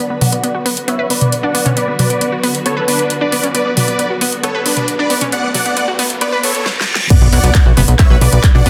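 Driving and euphoric, this short cut of uplifting trance runs at 135 BPM in B minor, sitting on a single Bm chord throughout. A thick, detuned supersaw carries the melody while an analog pluck with a warbling, vintage character spins arpeggios beneath it, both opening up under filter sweeps through a build-up from 0.0 to 7.1 seconds and trailed by dub echo. A dark, lush symphonic string section holds sustained chords underneath, and a very quiet layer of riser, reverse cymbal and sub drop effects runs the whole length, with the reverse cymbal arriving just before the drop. The big-room dance kit, with a huge snare, metallic hats, claps, toms and crash, comes in at 0.2 seconds and is overdriven, closing the build with a drum fill. At 7.1 seconds the drop hits with an impact, bringing a punchy, up-front electronic kick and, a moment later, a funky, plucky analog bass with a ring-modulated edge, pumping against the sidechain alongside the synths and strings. 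The mix is dense and heavily limited, set in a moderate digital room reverb.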